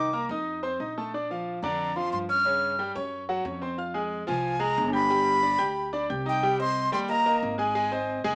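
Heard through a small-speaker sound in a moderate studio room, this driving, passionate salsa passage, cut from a longer piece, puts a breathy, reedy concert flute up front on the melody with vibrato and a crisp attack, while a brilliant grand piano with deep bass and long sustain supplies the accompaniment and a woody, thumpy pizzicato upright bass on gut strings holds down the low end.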